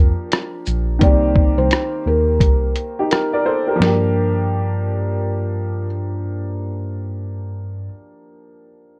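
Bathed in light reverb, this melancholic, nostalgic lo-fi hip hop fragment in G minor moves at 86 BPM with a swung 16th feel, as a dark, intimate felt-muted upright piano with audible action noise carries a soft melody until 5.9 s over a woody, cassette-tinged clear upright piano moving between Gm7 and Cm7, a mellow tine electric piano holding the bass, and an up-front, compressed, muffled sampler-style drum kit of thumpy kick, snare, rim click, hi-hat and shaker that plays only from 0.3 to 4.0 s.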